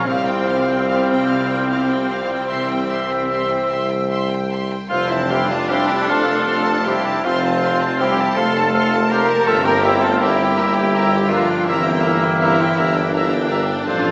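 A wet, reverberant scoring-stage sound heard as if through a small speaker frames this lyrical, tender excerpt from a slow, rubato romantic orchestral movement in 12/8 at around 49-56 BPM, where lush, expressive violins carry the melody over a second line from intense chamber violins, a hollow flute and a distant oboe, accompanied by focused violas and a very quiet dark bassoon, with dark French horns and a tight trombone section holding sustained chords, mellow vintage trumpet stabs, and a bass of rich cellos, double basses and a soft-attack tuba moving from Csus4 through C and F to Edim/G.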